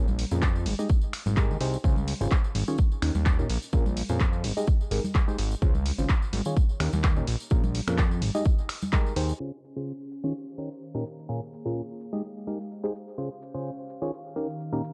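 Piano house with a feel-good, euphoric lift, built on a hollow, percussive organ stab riff carrying phaser, chorus, 12-bit sampler grit and dub echo, a fat, detuned analog bass and an up-front punchy kick that both stop near 9 seconds alongside bright, dry tambourine and congas, while an analog drum machine's snaps, handclaps, hi-hat and shaker continue as a warbling, nostalgic tape-like pad enters at 9.7 seconds under a filter sweep, all within a dark production.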